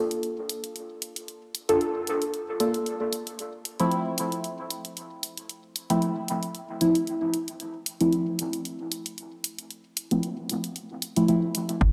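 Dub techno at 114 BPM with a light swing, hypnotic and meditative, where a deep, mellow, wave-folded chord stab with chorus, phaser, sidechain pumping and dub echo moves from Bbmaj7 to Fmaj7 over a dry, up-front electronic hi-hat in a lush hall reverb with bright 1980s-style digital sheen, until a punchy electronic kick and a round, soft sub bass on G1 arrive at 11.8 seconds as this cut from a longer piece closes.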